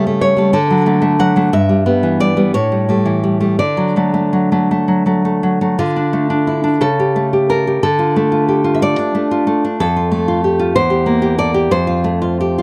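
A fingerpicked nylon-string guitar plays alone in a romantic classical style, unhurried and rubato in 6/8 at roughly 54-63 BPM, with a sunny, nostalgic mood. It opens in D major and turns to D minor at 5.8 s, where the harmony shifts toward F and C7/E before the excerpt breaks off at 12.6 s. The fresh strings ring clear and up front, with audible finger squeak in a dry, close, 1970s-style small-room recording.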